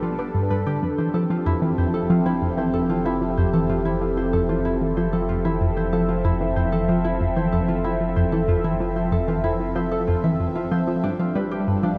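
Ambient, sequencer-driven space music in F lydian at 94 BPM in a straight 4/4, this expansive, luminous passage is cut from a longer piece. A tight sequenced synth drives a riff built from detuned sawtooth and pulse tones with a plucky filter and chorus and delay. Above it, a phased analog pad sits bright and up front, holding swirling, evolving chords through phaser and chorus. A concert harp adds mellow, fingerpicked arpeggios that ring through a low-pass filter and delay. Beneath them, a round analog bass gives a deep, dark foundation of square and sine tones with a wave-folded edge. A filter sweep runs across the synth arpeggio sound throughout, the harmony moves from G7 to an Fmaj7 at 0.8 seconds and back to G7 at 11.0 seconds, and a huge ambient reverb with an 8.6-second tail surrounds the whole.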